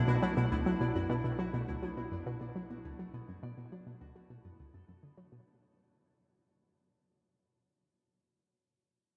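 Bathed in a huge, echoing reverb that suggests a vast space, this short fade-out from a longer piece of hypnotic, expansive, sequencer-driven ambient space music moves at 103 BPM in B minor over a single Bm7 chord. A round, bright, detuned analog pluck riff with chorus and delay sits up front, while a tempo-synced, pulsing gated texture with chorus pulses alongside it and an evolving, ring-modulated analog drone holds a low B in the background. A ringing, fingerpicked concert harp plays delayed arpeggios behind them and is the last to sound, lingering until 8.5 seconds as the whole passage fades and a filter sweep moves through the synth arpeggio sound.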